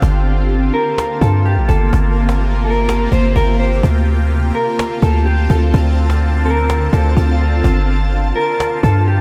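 A half-time groove at 126 BPM pairs a soft-handed, woody cajon with a deep, boomy 808-style bass that sits up front, giving this atmospheric cloud-rap fragment in G minor an ethereal, spacious mood as it moves from Gm11 to Dm7 and back. A shimmering, granular pad holds sustained chords under chorus, phaser and reverb, with an octave-up sheen and a slow attack. At 0.7 seconds a dark, clean, fingered electric guitar enters with a mellow melody soaked in spring reverb and tape echo.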